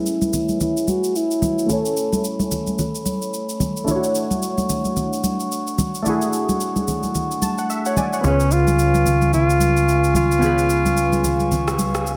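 A softly reverberant studio sound frames this relaxed amapiano excerpt at 110 BPM in A major, with a swung sixteenth-note feel and an easy, warm mood. Glassy, airy digital keys with a detuned chorus shimmer and a filter sweep carry the accompaniment throughout, adding a short fill at 7.2 s. Alongside them, a glass harmonica holds pure, ethereal sustained chords moving from Amaj9 to Dmaj7 and then C#7. A breathy, intimate alto saxophone sings a brief up-front melody at the start, softened by a low-pass filter and digital delay, and returns at 8.2 s as a punchy, funky analog bass plucks in underneath. Electronic shaker and rim click, heard in a large room, keep time beside close, dry congas played with soft hands on a thin, bright skin.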